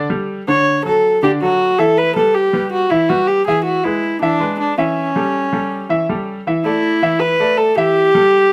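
A clear concert grand piano with short sustain opens this brief, danceable and festive Latin passage in D major at 160 BPM, and at 0.5 seconds a single dark, reedy viola with a gut-string, period-style tone takes the bowed melody up front over light reverb and close, detailed miking, as the harmony moves from Dmaj7 through Emadd9, E7 and A7 to a closing Dsus2 and A5.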